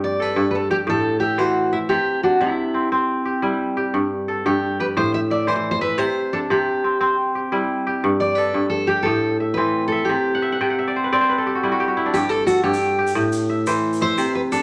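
A flowing 12/8 pulse at 117 BPM carries this warm West African string and xylophone excerpt, where a bright, ringing kora spins crisp arpeggios up front beside a fingerpicked dreadnought steel-string acoustic guitar carrying the melody, both set in a moderate large-studio reverb. The chords cycle through G, Am and C shapes, with a kora fill from 10.3 s. At 12.1 s the guitar takes a solo as a grainy, distant tube shaker enters.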